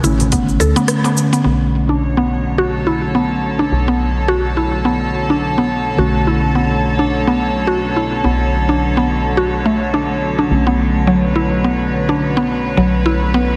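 A warm, hypnotic stretch of organic downtempo in B minor, moving at 106 BPM in 4/4 with a 57% swing on the sixteenths and resting on a Bm7 chord. Muted, felt-like synth keys with a warbling vintage tone carry the accompaniment through chorus, tape echo and sidechain pumping, while a woody, mallet-like FM pluck spins arpeggios through its own chorus and echo. Beneath them a round, dark FM bass decays softly and pumps with the sidechain. In the opening 1.5 seconds an organic electronic drum kit of cabasa, smooth hi-hat and rim click is heard, along with a very quiet, crisp metal-shell darbuka and a punchy layered electronic kick in the background, and the band lands an accent at 0.9 seconds. From 1.5 seconds a warm studio string section joins with sustained, up-front chords, bowed with light vibrato and a reedy, gut-string period tone. The whole piece sits in a wet scoring-stage reverb yet sounds heavily compressed like a radio broadcast, with multiband squeeze and lossy compression artefacts.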